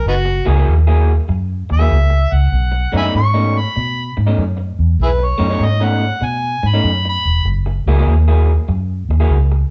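Electric blues shuffle at 97 BPM in F# mixolydian, swaggering and soulful, where a gritty, overdriven harmonica with scooped notes and tongue slaps carries a jazz-style solo up front until 7.5 seconds over a dark, round, foam-muted fingered bass and a slightly broken-up, lo-fi guitar riff entering at 0.3 seconds, all played live in one room with moderate large studio reverb through F#9 and B9 chords in a short cut from a longer piece.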